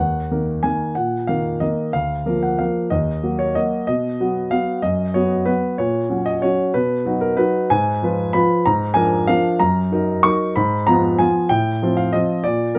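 A grand piano carries this classical waltz alone, its tone smooth and vintage, sitting up front in the mix from 0.0 to 12.8 seconds. The piece moves in 3/4 at 188 BPM, but the beats are uneven and the phrasing breathes with rubato, giving the dance an elegant, wistful lilt. Set in Eb minor, the harmony drifts from Ebm through Bb/D and B, then darkens with diminished and seventh chords such as Fdim/Ab and Bb7/Ab before closing on F7/A, leaving the phrase unresolved. The piano spans a range from D2 up to Db6, and a moderate studio reverb lends a gentle sense of space. The production is dark and warm, with the top end rolled off, and this short clip is cut from a longer piece.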